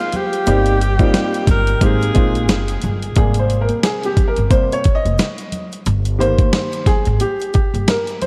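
A breathy alto saxophone with scooped notes and delay opens this smooth, swung jazz-hop excerpt at 89 BPM in Ab major, over a boxy upright piano and very quiet, bright maracas and congas; a gritty, compressed soul sampler-style drum kit with a thumpy kick and a woody pizzicato upright bass come in almost at once, the saxophone stops at 2.8 s, and the piano takes a short-sustained solo over Abmaj7 and Cm7/G from 3.2 s, in a dreamy mix soaked in lush hall reverb.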